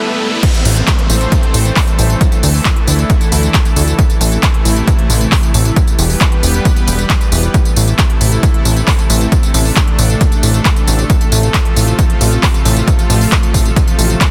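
Euphoric and soaring, this uplifting trance excerpt in A minor at 135 BPM opens with a brief background riser and swell before the drop lands at 0.4 seconds, where a punchy, overdriven electronic kick sits up front beside a big-room kit of crisp hats, handclaps, tambourine and crash cymbal, its hats, percussion and cymbals pumping to the sidechain. A plucky, funky analog bass with a ring-modulated sawtooth and square bite pumps to the sidechain, while a lush, detuned supersaw pad carrying 12-bit sampler grit and its own sidechain pumping holds sustained chords moving from Am through Dsus2 and Em to F/A. The dense, heavily limited master wraps it all in digital ambience.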